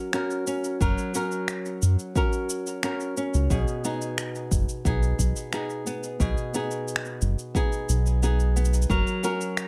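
Pastoral and playful, this short folktronica passage, cut from a longer piece, pairs acoustic flamenco guitar with electronic production in a straight 4/4 feel. The fingerpicked guitar opens alone at 0.0 s with arpeggios sitting up front, and a tape echo trails its notes. Electronic finger snaps and cabasa slip in almost at once, carrying a tape-warm, produced character re-recorded in a large room. At 0.8 s a deep electronic kick and a round analog bass arrive together. The bass is dark and detuned, blending sawtooth, sine and triangle tones with a fast attack and sustained notes. The harmony moves from F# to B6 and back to F#, and a light reverb gives the whole passage a gentle sense of space.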